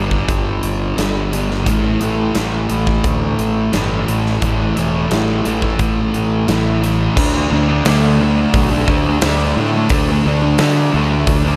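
This short cut from a longer rock piece in the shoegaze and dream pop vein opens on a dark, double-tracked fuzz guitar riff, distorted and picked, sitting up front with a subtle chorus. A growling fingered electric bass enters with it, overdriven, bright and punchy, sounding direct and amped beneath the guitar. The huge arena drum kit joins at 0.1 seconds, an acoustic kit with a hall quality, bright cymbals, a medium-tuned snare and a boomy kick, working across crash, hi-hat, kick and snare. The chords move from G5 to A5, then shift to D5 at 7.2 seconds as the piece turns to a new section. Light reverb and a small room ambience wrap the steady 4/4 groove in a hazy, dreamy atmosphere.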